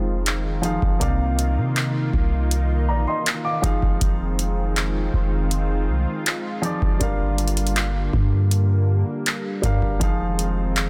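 A straight 4/4 pulse at 80 BPM comes from a booming analog drum machine that enters at 0.3 s with a deep kick, metallic hi-hat and handclaps, sitting up front beside a boomy 808-style bass whose sine tone and fast attack anchor this late-night, longing contemporary R&B excerpt in F dorian. A dark, mellow baby grand piano with short sustain plays accompaniment while a lush, detuned unison pad with chorus holds thick, slow-blooming chords through Fm7, Cm11 and Gm7. The sound is dry and dense, with a heavily limited modern master.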